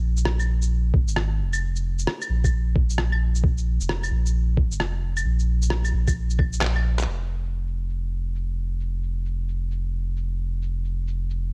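Rainy and nocturnal, this future garage excerpt moves at 132 BPM with a swung 16th feel, built on a deep, round sine sub bass that pumps against the sidechain with tube saturation, a muffled, pitched-down kick that thumps up front from 0.9 to 6.5 seconds before a drum fill at 6.6 seconds, and overdriven, low-passed shaker, rim click, claves and handclaps, all set in a digital ambience with a cassette-tape character.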